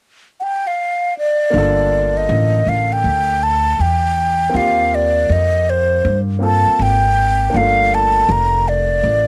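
A breathy, hollow concert flute carries the melody up front with a soft attack and a cassette-tape tint, playing alone from 0.4 seconds before a smooth, vintage grand piano and a woody, thumpy pizzicato upright bass on gut strings join at 1.5 seconds. This mellow, nocturnal jazz-hop fragment moves at 80 BPM in G minor with a swung sixteenth-note feel, the piano voicing Gm9 and Eb69 chords beneath the close-miked flute. The home cassette recording sits in light reverb, giving the short passage an intimate late-night glow.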